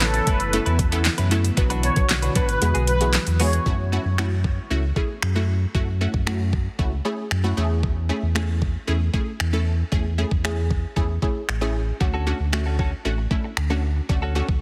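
A straight 4/4 groove at 115 BPM drives this confident dance-pop excerpt in F# minor. It rests on an up-front, tape-warm electronic R&B kit of knocking kick, fat snare, metallic hats, finger snaps and handclaps, and a deep, full sine sub bass doubled at the octave that pumps against the kick. The opening drop moves through Aadd9, Bm and Eadd9. There, a filtered, airy supersaw swell carries the melody through a delay, a dark, ethereal FM pad sits in the background with chorus and its own reverb, a clean, direct-recorded electric guitar plays a compressed, picked riff, and a very quiet, crisp group handclap adds a human touch. The kick drops out from 2.6 to 3.7 s before the next section settles on F#m7, Amaj7/E and Dmaj7. From the very start, a lush, punchy detuned pluck with analog chorus and a sweeping filter carries the accompaniment over the bass and drums, and the guitar riff returns at 12.0 s. 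The whole mix has light reverb and a heavily compressed, radio-ready sheen.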